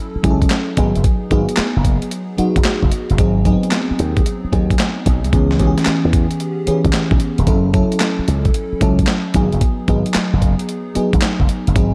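Punchy and confident, this new jack swing R&B groove moves at 112 BPM in 4/4 with a heavy 16th-note swing, its FM electric piano with a soft pad layer opening at 0.0 s, lush and dreamy under chorus and phaser, moving through F#m7, G#m7, G#7 and C#m7. From 0.2 s a bright, growly slap bass with an envelope filter and a gritty, overdriven sampler-style drum kit join in, the kit pairing a thumpy kick and medium-tuned snare with handclaps and hi-hat. The dark production sits in a moderate echo-chamber reverb, and the piece is cut from a longer work.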